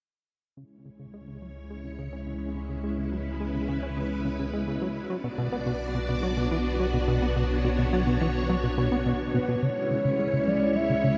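A huge ambient reverb with a long tail bathes this short cut from a longer piece of hypnotic, expansive space music, moving at 106 BPM in a straight 4/4. From 0.6 seconds a lush, vintage string machine fades in with sustained full-ensemble chords under ensemble chorus, while a punchy, funky analog bass plays a plucky riff through analog delay and a deep, round sine sub bass fades in beneath it. The harmony moves from C#m to Bm and returns to C#m as the second section opens at 9.6 seconds, where a filter sweep colors the plucked bass riff. At 9.3 seconds a smooth, expressive portamento lead enters with a mellow melody, carrying vibrato, subtle chorus, cassette tape character and analog delay. The lead sits slightly forward of the string chords and bass parts, gliding above the sustained ensemble until the cut ends.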